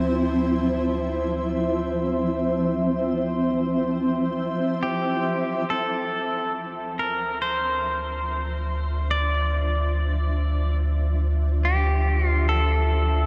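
A huge, wet reverb with a long 7.3-second tail fills this dark, warm ambient excerpt, giving it a melancholic and spacious mood in D minor at 71 BPM in a straight 4/4. Up front, a shimmering, ethereal pad holds sustained chords on a Dm9, its detuned, granular layers, octave-up shimmer and chorus evolving slowly, and from 5.7 seconds it fades in further. Beneath it a deep, ominous drone rumbles on a low D, thickened by tube saturation. A pure, glassy glass harmonica sits in the background with a gentle beating quality until 5.7 seconds. At 4.8 seconds a clean, compressed pedal steel guitar enters with the melody, played with fingerpicks, sliding and using volume swells, and trailing into a diffuse ambient delay.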